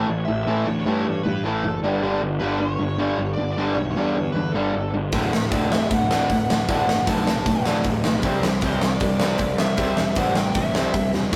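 A straight 4/4 punk rock drive at 155 BPM carries this rebellious, rowdy clip from a longer piece. A nasal, dark lead guitar with a parked wah plays the melody over a bright distorted rhythm guitar riff, a lo-fi garage guitar tucked in the background, and a fuzzy picked bass, all moving through A, G5, D and C. The big acoustic drum kit, with its fat snare and punchy kick, arrives up front at 5.1 seconds and fires off a fill at 11.1 seconds, all caught in a rough rehearsal-room recording with light reverb.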